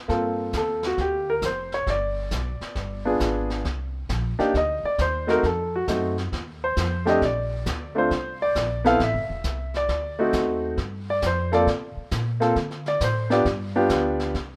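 A clear, up-front grand piano carries the melody through this moody, swinging jazz trio fragment, its intimate sound letting the action noise come through as it moves over rich minor and altered dominant chords. A woody, thumpy pizzicato upright bass holds the low end, while a distant, roomy brush kit with a punchy kick and brushed snare sits well back in the mix. The whole piece has the rough feel of a home demo in a moderate studio reverb, with the piano ending at 14.3 seconds just before the bass and drums close at 14.6 seconds.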